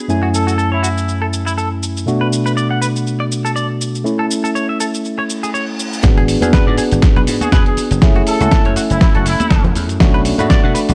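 A swung 121 BPM nu-disco groove in F# minor opens with a gritty, tape-warm sampler-style kit of hi-hat, shaker and snare under a barky tine electric piano that pumps through 12-bit sampler grit, low-pass filtering and delay, while a twangy, chorus-drenched clean guitar riff and brief punchy bursts from a vintage trumpet section set a sensual, sleek mood. At 6.0 s, after a reverse cymbal, a punchy layered electronic kick and a foam-muted, thumbed slap bass arrive, soon joined at 6.4 s by high-tuned congas tucked in the background, as a drum fill and a filter sweep on the electric piano drive the build-up. The trumpets return at 7.4 s over chords moving from G#m7b5 back to F#m7 and Bm7, all within a dark production of light digital reverb, in a passage cut from a longer piece.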